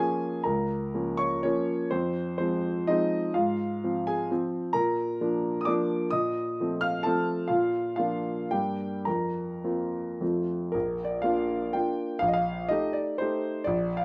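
A smooth, vintage-toned grand piano with long sustain sits up front in light reverb, playing a graceful, proud romantic classical dance in 3/4 with dotted rhythms and free rubato between 100 and 139 BPM; this passage, cut from a longer piece, opens on darker minor-colored harmonies before settling into B-flat major at 4.7 seconds and moving into a new phrase at 10.7 seconds.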